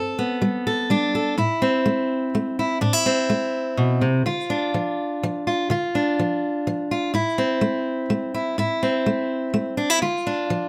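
Peaceful and hopeful, this short folk passage moves at 125 BPM in a flowing 3/4 with a straight feel. A lone fingerpicked steel-string acoustic guitar carries everything, sitting up front with a bright, concert-quality tone that spans from G2 to A4. The close, detailed miking catches finger squeak, lending the performance an intimate, present quality within a light reverb. It opens on a Gadd9 chord before settling at 1.4 seconds into a passage that alternates between Am and Dm. Cut from a longer piece, the clip closes on Dm around 10.0 seconds, leaving the gentle progression open-ended.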